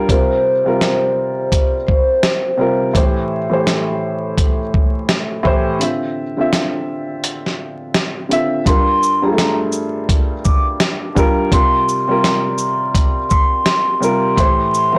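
A dark, woody upright piano opens this gritty, tough boom-bap hip-hop excerpt at 84 BPM in G dorian, its mellow, intimate voicing carrying audible action noise up front. A dusty, sampler-style drum kit enters with a thumpy kick, a medium-tuned snare, hi-hat and shaker, sounding compressed and tape-warm, re-recorded in a large room and set forward in the mix, with a swung sixteenth-note feel. A vibraphone played with soft mallets sings the melody from 0.1 to 2.9 seconds, metallic, ringing and airy with a slow motor vibrato and a digital delay. It drops out for a break, and the piano carries chords such as Am7 and Dm9 over the drums until the vibraphone returns at 8.7 seconds over Gm7 and C7sus4. The whole recording is blown-out and overdriven, coated in vinyl crackle and light reverb.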